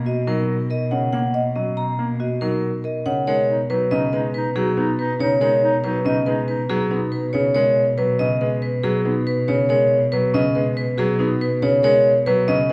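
Propulsive and bright, this excerpt of minimalist classical pattern music moves at 140 BPM in 5/4 with a straight feel, centered on B major. Up front, a vibraphone struck with hard mallets carries the melody, its metallic, ringing tone sounding vintage and band-limited with the motor off. Beneath it, a marimba with medium mallets on rosewood bars spins woody arpeggios. A clear grand piano with short sustain supplies smooth accompaniment in its lower register, and a dark, close cello holds the bass on a bowed B with vibrato. The harmony shifts from D#m over B to Bmaj9 at 3.3 seconds, when a soft-attack clarinet enters as a distant, roomy second line on D#, stopping at 7.3 seconds. Light reverb gives the ensemble a gentle sense of space.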